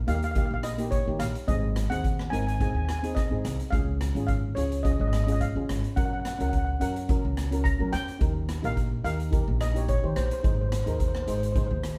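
A bouncy 4/4 calypso groove at 107 BPM, with a light 16th-note swing, sets a sunny mood in this twelve-second excerpt. A close-miked, dry lead steel pan carries the melody with a full, shimmering tone over a softer, mellow, airy double-seconds pan accompaniment. A woody pizzicato upright bass and an up-front, polished street-band drum kit with boomy kick, hi-hat and rim click move through Eb, Ab, Db and Gb, then back to Eb before landing on Abadd9, all heard from further back in a small room.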